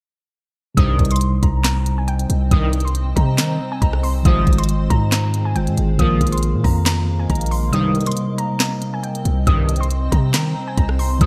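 Hip hop in a trap style, this dark, eerie passage moves with a half-time feel and is cut from a longer piece. A mellow tine electric piano, clean and filtered as if heard through its built-in speakers, opens the accompaniment at 0.7 seconds, joined almost at once by a warbling, dusty lo-fi pluck carrying a nasal, high melody through chorus, delay and a filter sweep. A juicy, detuned sawtooth polysynth stabs in a low register with ring modulation and a resonant, bright edge, while a hard-hitting 808-style bass with a fast attack and decaying sine tone sits up front beside the trap kit's knocking kick, sharp snare, crisp hats, handclaps and rim clicks. From 1.9 seconds a granular cloud pad adds blurred, evolving sustained chords bathed in its own reverb, and the whole mix carries a light digital ambience. The harmony moves from Cm through Ab6 and Bbsus4 back to Cm, and the kick drops out briefly at 7.7 seconds before the passage runs on to its cut.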